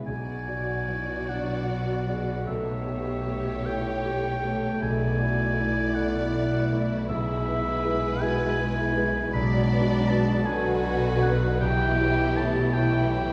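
Heard from further back in a reverberant scoring stage, this sorrowful, bittersweet cinematic excerpt in B dorian drifts in a rubato 6/8 at about 48-54 BPM: a lush violin section carries the expressive, vibrato-laden melody while a clear solo oboe sings a second line above it and a softer violin section adds another line beneath, a mellow French horn section holds sustained chords, a background viola section and a rich, close cello section fill the middle and low registers, a smooth double bass section holds a low B, and a deep, open grand piano accompanies from the background over a progression moving from Bm through A7/B, Dadd9/B and E/B.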